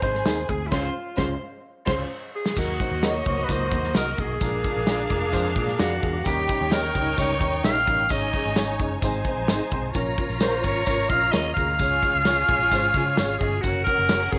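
A small room and moderate spring reverb give this short cut from an uptempo 1960s-style soul track a lively, vintage sheen, and its joyful, danceable drive runs at 130 BPM in a straight 4/4, in Db major. Up front, a raspy, growling alto saxophone carries the melody with vibrato and a slapback echo. A lush, bowed string section plays a second line alongside a woody upright piano accompaniment. Underneath, a dark, foam-muted fingered electric bass sits round and punchy against a natural drum kit with a punchy kick, medium-tuned snare and dark cymbals, while a slightly broken-up electric guitar with ensemble chorus adds background stabs alongside a jingly, close tambourine. After a band accent and drum fill in the opening seconds, the harmony settles on Ebm at 2.6 seconds and moves through chords such as Bb7, Eb7 and Absus4 before reaching Gb at 13.6 seconds.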